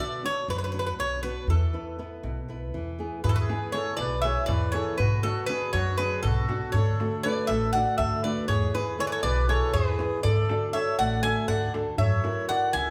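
Moving in a straight 7/8 at 240 BPM counted in eighths, this bright, uplifting Greek folk piece for a bouzouki band is cut from a longer performance. The Greek bouzouki carries the melody from 0.0 s, sitting up front with a metallic, picked double-string sound and some octave-doubled strings. Beside it, a flamenco guitar fingerpicks the accompaniment with fresh strings, and an upright bass joins at 0.5 s with woody pizzicato on steel strings. At 3.2 s the texture fills out as a reedy, airy accordion adds a second line with slow beating, and a darbuka with a metal shell comes in crisp, large and deep, struck with hard hands and heard close. The chords move from Bm and E5 through E, Bm, D, E and D before landing on F#7. The band plays live together in one large studio, and a wet reverb gives the whole a roomy glow.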